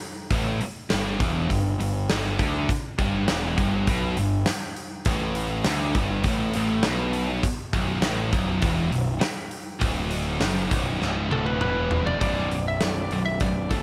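Driving and heavy, this hard rock excerpt opens on a big acoustic drum kit with a punchy kick, a medium-tuned snare, hi-hat and toms sitting up front in a roomy, rolled-off sound, joined at 0.3 seconds by a bright, scooped, high-gain double-tracked guitar riff and a growly fuzz bass that is picked and punchy. The chords move from G5 to B minor at 7.4 seconds, and a drum fill at 11.0 seconds leads into a new section. A twangy, slightly broken-up lead guitar enters with a compressed melody at 11.3 seconds, all under a light reverb.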